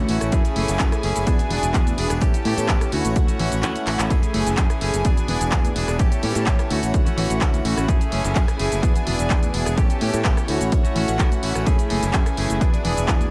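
A straight 4/4 pulse at 127 BPM drives this nostalgic, sensual stretch of filtered disco house in F# minor, cut from a longer piece, with a punchy, tape-warm electronic kick sitting up front and sidechain pumping running through the brass, strings, guitar, bass and drum machine. An analog drum machine supplies handclaps, hi-hat, rim click and shaker, while very quiet tambourine and congas add a bright, small-room acoustic touch under soft hands. A growly, direct fingered electric bass anchors the low end, and a clean, twangy electric guitar picks a compressed riff roughened by vintage 12-bit sampler grit. Round, detuned synth brass with chorus and phaser plays the accompaniment, and a pure, floating violin section holds sul tasto chords above it, cycling through F#m9, E7, A7 and Dmaj9. The kick drops out from 3.6 to 4.1 seconds around a drum fill at 3.9, and light reverb frames the mix.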